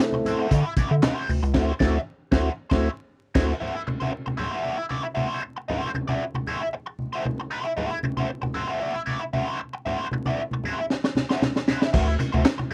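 A dry, close 1970s-style studio sound with light reverb and a faint vinyl crackle frames this playful, funky fragment, cut from a longer piece and moving at 116 BPM in a straight 4/4 in D mixolydian around a D9 chord. A biting overdriven guitar with wah and tube saturation plays accompaniment throughout, while low-tuned, soft-handed congas sit distant in a large room beneath it. At the start, a gritty breakbeat kit with dark cymbals, a high-tuned snare, tight kick and handclaps comes in together with a tonewheel organ whose stabs carry key click, vibrato and a slow rotary speaker. A rubbery, hollow square-wave bass follows at 0.5 s, and the band hits a shared accent before organ, drums and bass fall away at 3.5 s. The middle section leaves guitar and congas to hold a rootless D9 groove until the drums return with a fill at 10.9 s. The bouncy bass comes back at 11.9 s as the D9 returns, just before the fragment ends.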